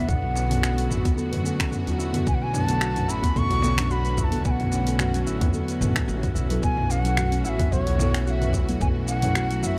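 An airy, reedy bansuri with vibrato and a soft attack carries the melody over fingerpicked, ringing Celtic harp arpeggios, muted felt-like synth keys with a warbling chorus, distant bowed strings, thumpy pizzicato upright bass, a tight electronic kick, a deep house kit of finger snaps, hi-hat, shaker and toms, and a very quiet darbuka, all moving from Bm7 to F#m7 at 6.6 seconds in this mystical, swung organic downtempo excerpt.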